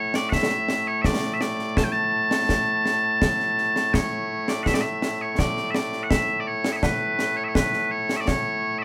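Proud and ceremonial, this short cut from a longer Scottish traditional pipe tune in A major moves at 83 BPM in a straight 3/4, with loud, piercing bagpipes carrying a continuous solo melody up front over close, dry concert snare and bass drum with bright cymbals, all captured as a band playing live in one room with moderate studio ambience, the same phrase heard twice, the second time from 3.9 seconds.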